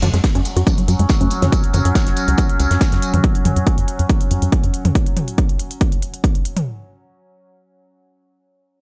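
Cut from a longer piece, this driving, industrial peak-time techno at 140 BPM opens on an F#5 chord, with an overdriven techno kit's smooth hats and toms, a dry, acoustic 70s kit with a fat snare and tambourine, a punchy sawtooth sequencer bass sweeping through its filter, and a detuned, mellow sequenced riff with chorus and tape echo that drops out at 1.5 s. A heavy, up-front electronic kick lands at 0.2 s, a resonant drone with moving overtones rises in from 0.5 s, and a thick, ring-modulated rave stab flashes very quietly between 1.2 and 1.5 s. Sidechain pumping breathes through the bass, riff, drone and techno-kit hats, and the intense groove stays under light reverb.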